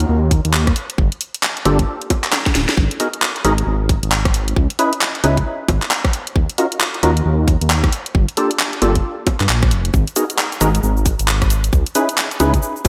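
UK garage in its two-step form, this soulful, bouncy excerpt moves at 134 BPM in G# minor, with a 61% swing on the sixteenths giving the groove its lilt. A dark, detuned sawtooth bass rumbles low and deep from the start, its unison layers beating against one another, while a garage drum kit of bongos, cabasa, handclaps, hi-hat, rim click and a cracking snare sits up front, overdriven and touched with small-room and gated reverb. A tight, overdriven electronic kick joins at 0.3 seconds, and a short drum fill lands at 2.3 seconds. From 1.7 seconds a hollow, mellow organ stab enters with chorus and delay, as the harmony cycles through the minor-ninth chords Gm9, G#m9, C#m9 and D#m9. The production is bright in a 1980s digital style, wrapped in light reverb and a digital ambience.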